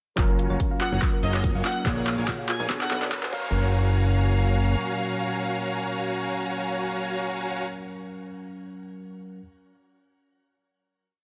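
A half-time future bass groove at 143 BPM in F# major, swung on the sixteenths, opens with a punchy overdriven electronic kick and an overdriven big-room kit of claps, metallic closed hats with rolls, and crash, both of which stop at 3.4 s. Over a build that runs to 3.5 s and moves through F#maj7, A#m7 and Bmadd9 chords, huge detuned supersaw chords play a dotted riff through a filter sweep, while a fat, wave-folded analog bass, a barky electric piano with syncopated pushes, woody distant strings, a round thumb-piano-like pluck arpeggio and faint riser effects gather beneath an airy, dreamy lead that enters at 0.8 s. The euphoric, lush final hit rings on an F#maj7 chord with pumping supersaws, gritty electric piano and dark strings in a dense, heavily limited mix with light reverb.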